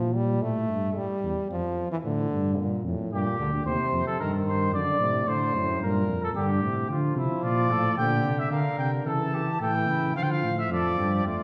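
Serious and driving, this classical canzona for brass ensemble moves at 111 BPM in a straight 4/4, heard as a short section cut from a longer piece. A dark tuba with a smooth top and soft attack carries the bass from the opening, alongside a trombone playing accompaniment with vibrato, its tone warm. At 3.1 seconds a flugelhorn enters on a second line, soft-edged and distant, and a mellow trumpet takes the melody in its upper range from 7.4 seconds, with light vibrato and a gentle attack. The harmony centres on D minor, passing through chords such as Gm, D/F#, and A/C# before settling back on Dm. A wet recital hall reverb gives the ensemble a roomy, resonant setting.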